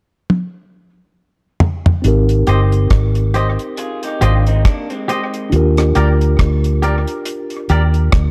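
Sweet and romantic, this short lovers rock reggae excerpt moves at a relaxed 69 BPM with a swung sixteenth feel, opening on a deep, dry drum kit whose fill runs from 0.3 to 2.0 seconds before a round, foam-muted fingered bass and a mellow tine electric piano enter at 2.0 seconds over Abmaj7, shifting to Ebmaj7 at 5.5 seconds. A twangy, clean electric guitar adds stabs with spring reverb, while a slightly broken-up, lo-fi guitar through a small old amp picks brief arpeggios. The punchy bass and tight kick sit up front in a dark, studio-reverb production.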